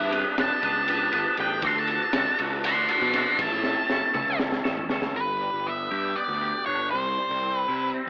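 Psychedelic rock in a hypnotic, trippy 7/8 at 238 BPM counted in eighths, this short cut from a longer piece has an AM radio sound with light reverb, moving from G through D and A before settling on G and C. An up-front, dark octave-fuzz lead guitar with distortion and digital delay takes a solo from the start until 5.2 seconds, over a clean, twangy, fingered electric guitar riff through a rotary speaker and a warm, fuzzy overdriven picked bass. A crunchy breakbeat kit with a punchy kick, high-tuned snare and dark cymbals plays a fill from 3.6 seconds and drops out at 5.1 seconds, leaving the guitars and bass to carry the closing passage.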